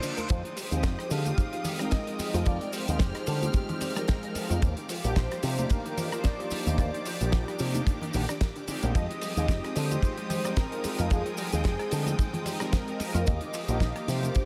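A punchy, up-front picked electric bass with an envelope filter drives this sensual, groovy nu-disco excerpt alongside a tight, dry kick and a damped 70s drum kit with dark cymbals and a fat snare, while congas sit in the background, a thick, detuned unison lead with analog delay carries the melody, mellow synth brass with chorus, phaser and tape echo and a very quiet nasal analog pluck arpeggio fill the middle, and a lush symphonic string section pumps beneath, all bathed in a dreamy cathedral reverb over Fm9 and Ebmaj9 chords.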